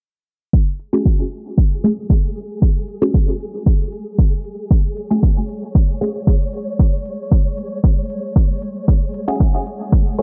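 A steady, straight 4/4 pulse at 115 BPM drives this meditative, cavernous dub techno excerpt in F# minor, anchored by a punchy, overdriven analog kick up front from 0.5 seconds, with a layered, overdriven hi-hat sitting far in the background. A muted, detuned chord stab with a fast pluck and phaser sounds a rootless F#sus2 under a filter sweep, pumping against the kick and trailing dub echo before dropping out at 6.1 seconds and returning at 9.3 seconds. Behind it, a grainy, flickering granular texture with slow attack and long release hovers in its own reverb, set in a dim, low-passed digital ambience.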